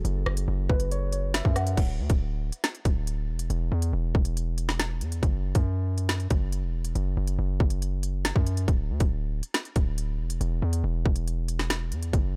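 Muted, felt-like synth keys with a soft chorus shimmer play a dark F#madd9 chord over the bass and drums for the first 1.8 seconds, before this tense, ominous half-time drill excerpt at 139 BPM in F# minor leaves only a punchy, saturated 808-style bass and an up-front electronic kit of hard-clipped kick, woody snare, crisp hi-hats, rim clicks and crash driving on in a dry, dark production.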